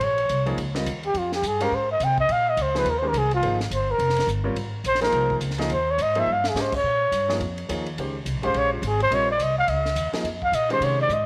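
Modal jazz at a brisk 211 BPM in 4/4 with a swung eighth-note feel, this short cut from a longer piece feels searching and intense. A breathy, whispered trumpet carries the melody as an up-front solo, close-miked and intimate with vibrato and a soft attack, ranging from F4 to G5. A woody, thumpy upright bass on gut strings plays pizzicato beneath it, while a warm upright piano enters at 0.5 seconds with accompaniment, its audible action noise adding a natural touch. A compact cocktail drum kit with dark cymbals, a high-tuned snare and a punchy kick keeps time at a low level, dropping in fills at 6.3 and 11.1 seconds. The harmony moves from Bbm9 to Abadd9, and a moderate plate reverb with small room ambience surrounds the group.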